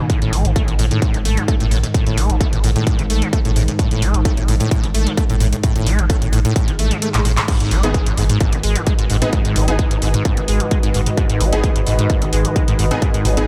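Industrial and relentless, this driving peak-time techno excerpt pounds on a distorted, overdriven kick and an overdriven drum kit of handclaps, hi-hats, toms and crash cymbal, beneath a round sub bass and a squelchy, resonant acid saw riff with dub echo over a dark ambient pad drone, until the kick drops out for a drum fill and a very quiet swell rises into an impact at 7.5 seconds that opens the drop, where a thick, detuned rave stab and a warbly, lo-fi tape-like pad join the echo-heavy mix.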